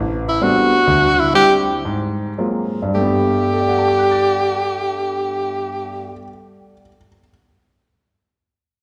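Jazz with a warm, playful swing, this short passage cut from a longer piece eases its pace over the first 2.9 seconds as the chords move from Am11 through D9sus4 and Ab13 to settle on Gmaj7. A bright, present tenor saxophone carries the melody up front from 0.3 seconds, its vibrato and scooped notes giving a jazz-style solo voice. Beneath it, an intimate concert grand piano supplies natural accompaniment with deep bass and audible action noise, all bathed in the wet reverb of a recital hall.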